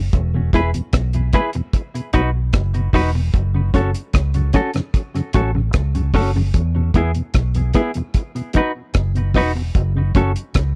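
Roots reggae in a hypnotic, serious mood, this short cut from a longer piece cycles through E, B and F# minor in a straight 4/4. A deep, dry drum kit of hi-hat, kick drum and rim click sits up front, with a tight kick and a dark, smooth sound whose top is rolled off. A vintage foam-muted fingered electric bass, round and amped, anchors the low end from the first moment, also placed up front. A mellow tonewheel organ enters at 0.3 seconds, clean, round and dark, colored by chorus vibrato, a slow rotary speaker and tape echo. A semi-hollow electric guitar follows at 0.5 seconds, fingered, clean and compressed, with a hollow-body character, its own tape echo, and an up-front place in the mix. The close, 1970s-style studio recording carries a small room ambience.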